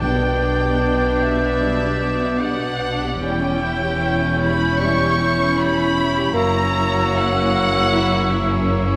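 Solemn and elegiac, this slow romantic orchestral movement moves at 76 BPM in 4/4 with a rubato feel. Rich, focused violins carry the vibrato melody until 8.7 seconds over G/B, C#dim/E and F#7, while a second violin line, a hollow, airy flute, a bright clarinet and a warm oboe weave secondary lines. Bright violas and a dark bassoon add accompaniment, horns hold sustained chords until 8.2 seconds, lush double basses and warm cellos anchor the bass, and very quiet, dry timpani sound only in the first 1.2 seconds, all within a reverberant scoring-stage space.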